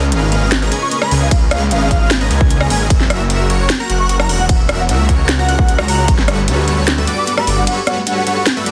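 Pumping future bass at 151 BPM in a half-time feel opens with a huge supersaw riff, a thick detuned saw bass up front, a soft, dreamy lead arpeggiating high in the background, and a round, tine-like synth pluck trailing dub echo through a cassette-tape haze, all moving from C#13 to F#7 and on to Gmaj9#11. A trap kit with a sharp, softly clipped snare and metallic hats starts at 0.1 seconds, an airy wooden flute with vibrato and an unsteady tone carries the melody from 0.8 seconds, and a punchy electronic kick hits from 1.3 to 6.2 seconds. The mood is emotional and bittersweet, set in light reverb under a dense, heavily limited master in this brief cut from a longer piece.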